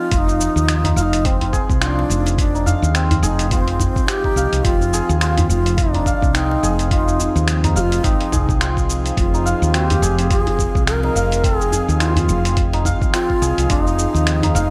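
Lightly reverberant and gritty, this earthy, mystical organic downtempo excerpt at 106 BPM in F minor swings its sixteenths over a single Fm7 chord. A breathy, reedy low ney with vibrato carries the melody and a hammered santur rings out shimmering arpeggios, both through tape echo. An airy, detuned pad sustains soft chords in the background with sidechain pumping, and a round, woody fretless bass sits up front. An overdriven, dusty sampler-style kit of finger snaps, hi-hat and shaker plays alongside a thumpy electronic kick, which drops out at 13.8 s, and a very quiet, soft-handed djembe.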